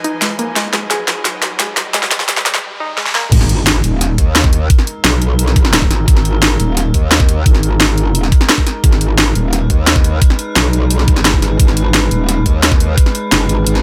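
Dark technical drum and bass, futuristic and aggressive, where a filter-swept build-up of eerie inharmonic FM drone, a warbling lo-fi pluck arpeggio, very quiet reedy gut-string chamber strings, a background riser and fills from an overdriven, small-room drum kit gives way at 3.3 seconds to a drop driven by an up-front knocking electronic kick and a saturated metallic wobble bass, with cracking snare, bright hats, crash, toms and an impact over the sustained drone, the background effects layer also carrying a reverse cymbal.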